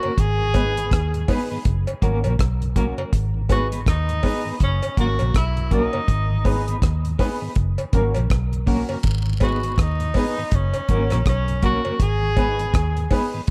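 A distant, roomy tenor saxophone with scooped notes and light vibrato carries the melody through dub echo over a clean picked electric guitar with tremolo, a soft flute-like tonewheel organ with chorus vibrato and key click, woody upright piano stabs, and a small-room cowbell and jawbone-type rattle, before a dry reggae drum kit with a tight kick and a dark, round, foam-muted electric bass join up front at 0.2 seconds, forming a laid-back, serious roots reggae excerpt at 81 BPM in G# minor that sways between G#m and F# with a swung sixteenth-note feel and a warm, dark production.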